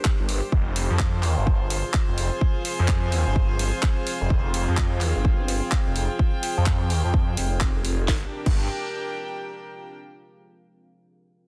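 Bass house at 127 BPM with a swung 16th-note feel, this swaggering, bouncy excerpt moves between Gm and Fm before landing back on Gm at 8.1 seconds. A punchy, up-front electronic kick and a house kit with a cracking snare, handclaps, hi-hat and crash cymbal drive a thick, swirling detuned saw bass that is phased, overdriven, sidechain-pumped and filter-swept. In the background, a deep, moody pad with chorus and built-in reverb sits beneath a clear, floating bowed string section that carries on alone until 9.9 seconds, all within a dense, heavily limited, fairly dry mix.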